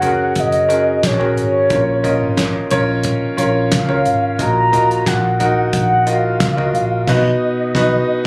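From the first beat, a mellow, horn-like synth lead with chorus and vibrato carries the melody over a clear, up-front concert grand piano, a round, foam-muted picked electric bass and a damped 70s drum kit with a fat snare and dark cymbals, giving this anthemic piano-driven pop excerpt at 89 BPM a warm glow as it moves from F#add9 through A#m and D#madd9/A# to B, where the band hits an accent at 7.1 seconds and the piano slips in a brief fill at 7.8 seconds, all heard through the roomy club reverb of a phone recording.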